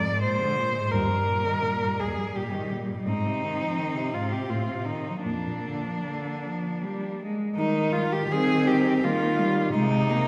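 Classical music for a cello ensemble, this serene, lyrical passage moves in a gentle triple metre with a flexible, rubato feel, cut from a longer piece. A clear cello carries the melody up front, its bowed line smooth and even with a singing vibrato, while a second cello, rich in tone, traces a quiet second line set in the background. Another rich-toned cello supplies the accompaniment, sounding distant yet placed up front, and a warm cello enters at 0.9 seconds on the bass, close and expressive, with vibrato and sliding portamento between notes. The harmony drifts from a dominant seventh into the home chord, passing through a diminished colour before settling, and a second section begins at 7.6 seconds. The ensemble is heard from further back in a scoring stage, its wet reverberation lending the blend a spacious, glowing bloom.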